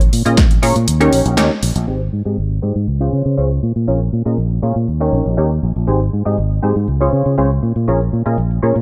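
A punchy, up-front fingered electric bass pumps beneath a low-pass filter in this sunny, funky slice of filtered disco house, joined at 0.3 seconds by a mellow sawtooth polysynth comp with chorus, phaser and gritty 12-bit sampler texture over Bbm7, Eb7, Abmaj7 and Dbmaj7 chords, while a layered, tape-toned house kit with filtered, pumping hi-hats and crash cymbal and a filtered snare plays in a small room, an analog electronic kick thumps only briefly at 0.4 seconds, and a filter sweep runs from 1.9 seconds on under light reverb.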